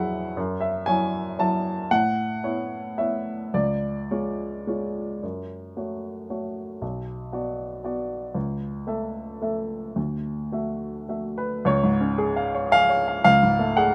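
In a flexible, rubato three-beat lilt, a solo upright piano carries this melancholic, fragile contemporary classical passage, cut from a longer piece and lasting just under 14 seconds. The piano's woody, polished tone sits up front in a moderate studio reverb, ranging from deep bass to the upper register as the harmony moves through minor and added-ninth colours. New sections arrive at 5.2 and 11.6 seconds, and the passage comes to rest on an unsettled minor chord over a bass note other than its root.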